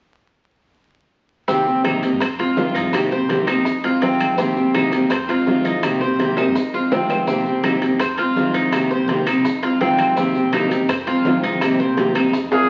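Sultry and danceable, this cut from a longer Cuban son and guajira piece moves at 166 BPM in C minor, rocking between Cm7 and Fm7 as a dark, full-bodied fingerpicked steel-string acoustic guitar and a metallic, double-strung Cuban tres playing arpeggios sit up front from 1.5 seconds. Beneath them, a growly, thumpy pizzicato upright bass, distant ringing congas, metal-shelled timbales, woody claves and grainy maracas fill the background, while tight, high-tuned bongos tap very quietly with soft hands, close and dry, and a drum fill arrives between 6.4 and 7.3 seconds. A breathy, whispered trumpet with vibrato enters close and intimate only at 12.5 seconds, all bathed in lush large-studio reverb and the crackle of a very old 78 rpm record.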